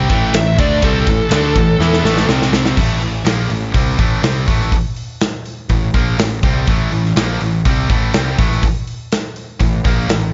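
A studio-room recording with its top end capped at 7.6 kHz carries this driving, aggressive hard rock fragment in A minor at 123 BPM, where a dark, tape-echoed high-gain lead guitar solos over a very quiet, bright double-tracked distorted guitar, a shadowy overdriven guitar in the background and a heavy high-gain guitar riff, while a punchy fuzz bass and an up-front acoustic drum kit with a medium-tuned snare and a hard-hitting kick push onward; a drum fill leads into the next section at 2.8 seconds, after which only the heavy guitar, bass and drums continue to the end at 10.3 seconds.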